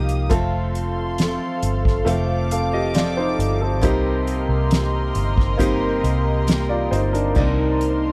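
Heartbroken and emotional, this short cut from a longer pop ballad moves at a slow 68 BPM in a straight 4/4, shifting from F to Cm7. An up-front upright piano with a clear, woody, slightly detuned and worn character carries the accompaniment across its range, while a picked steel-string dreadnought guitar adds full-bodied arpeggios. Underneath, a vintage foam-muted electric bass played with the fingers sits round and punchy near the front, and a drum kit struck with soft mallets brings a fat snare, boomy kick, hi-hat and crash with a big-room acoustic feel. A distant, reedy string section holds sustained chords high above with a gut-string, period tone and light vibrato. At 7.4 seconds a dark French horn section enters with a smooth-topped second line on a single Eb4. The sound is dry and close, in the manner of a 1970s studio recording, with little reverb.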